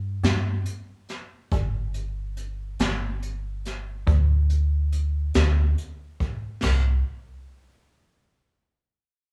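Brooding and mournful, this slow blues excerpt moves at 47 BPM in a straight 12/8, carried by a metallic FM bass whose mellow digital tone has a fast attack and decaying notes, sitting up front from 0.0 to 7.0 seconds. A vintage brush drum kit joins at 0.2 seconds with a medium-tuned snare, tight kick, hi-hat and crash cymbal, its acoustic sound mid-forward with a rolled-off top. The pair plays live in one room, with small room ambience and a moderate large studio reverb around them.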